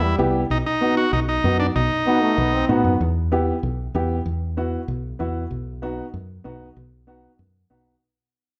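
A buzzy, overdriven vintage combo organ carries the melody up front alongside a bright trombone second line with slapback echo and a punchy, foam-muted fingered electric bass in this driving, fiery latin piece at 192 BPM in E harmonic minor, with a dark, woody upright piano entering at 0.2 s, the organ dropping out at 2.7 s and the trombone at 3.0 s, as bass and piano carry on over Em and B through a fade-out, heard from further back in a wet, large studio reverb.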